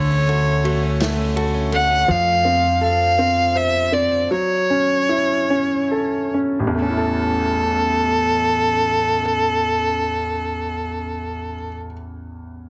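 A bowed violin with vibrato carries the melody of this tender, heartfelt six-eight pop ballad in A major at roughly 45-56 BPM, its focused, boxy tone sitting up front, while a clear concert grand piano with deep bass and audible action noise accompanies it through the excerpt. Early on, a clean, scooped electric guitar picks arpeggios in the background until 2.7 seconds, a woody pizzicato upright bass holds the low end briefly, and a natural country drum kit adds a bright ride cymbal and a medium-tuned snare. The tempo slows between 2.1 and 6.8 seconds, and the mix has a small-room ambience and a heavily compressed, radio-like sound.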